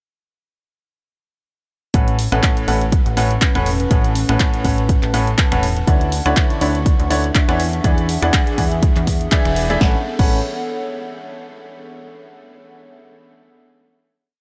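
A bright, slightly worn grand piano plays a dotted-rhythm house riff through sidechain pumping and analog delay, entering at 1.9 s together with a plucky, funky analog bass, an overdriven four-on-the-floor kick held up front, and a punchy analog drum machine with claps, finger snaps, hi-hats, snare and crash. This feel-good, joyful piano house piece in A major moves at 122 BPM with a light 16th-note swing, cycling through A69, Dmaj9 and E9 over a warbly, nostalgic tape-like pad that is chorused and dark. After a band accent at 9.3 s, the final A69 chord arrives at 9.8 s, and once the band drops out the pad sustains it alone until 11.7 s.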